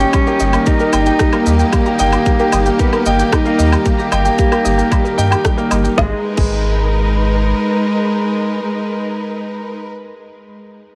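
A small-room ambience surrounds this hypnotic, cinematic piano-and-strings electronica at 113 BPM in G# harmonic minor, cut from a longer piece, where a polished, present grand piano riff with delay rides over a deep, round sub bass and a tight, up-front electronic kick, a produced electronic kit with woody snare, rim click, shaker, woodblock and crash, a lush bowed symphonic string section holding sustained chords under sidechain pumping, a dark, warbling lo-fi pluck tracing chorused, delayed arpeggios in the background, and a distant, reedy solo cello melody with delay, before the drums, kick and pluck stop at 6.5 s, just after the harmony shifts from D#/G to G#madd9 at 6.0 s.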